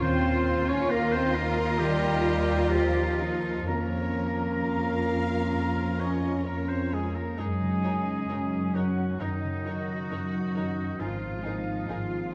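Sorrowful and longing, this rubato film-score cue in Bb minor drifts at 66 BPM as a focused, vibrato-rich violin section carries the melody over a very quiet, dark second violin line, a clear solo oboe and a pure, soft-attack flute section, while distant violas accompany, a dark French horn section sustains chords, a mellow concert harp rings out arpeggios, and lush cello and double bass sections anchor the bass, all bathed in the 1.9-second reverb of a wet scoring stage.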